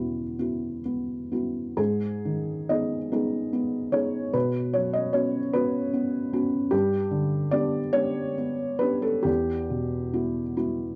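A felt-muted upright piano plays alone, its thick-felted tone soft, dark and mellow with short sustain, sitting up front in a studio reverb that adds a wet halo. This neoclassical minimalist excerpt moves in a rubato 6/8, reflective and intimate, drifting through chords from Emadd9 to G#m, Bsus2 and G before settling back on Emadd9 at 9.3 seconds. Ranging from low E2 up to D#5, it is a brief fragment cut from a longer piece.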